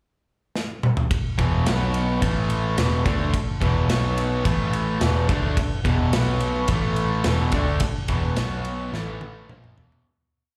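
A straight 4/4 rock groove drives this short, complete classic rock piece, brooding and swaggering in mood. The big acoustic drum kit opens with a fill from 0.6 seconds, punchy kick, medium-tuned snare, bright cymbals and toms up front in a studio room, before the band crashes in at 1.4 seconds. Two picked electric guitars play a power-chord riff cycling through E5, B5 and A5: a raw, overdriven garage guitar sits up front, while a compressed, distorted guitar stays in the background, both carrying slapback echo. Beneath them, a dark, round, foam-muted electric bass pushes driving eighth notes and doubles the guitar riff. The sound is that of a live club gig heard through the venue's PA, with club reverb, and another drum fill from 8.9 seconds closes it as the music fades out from 7.8 seconds.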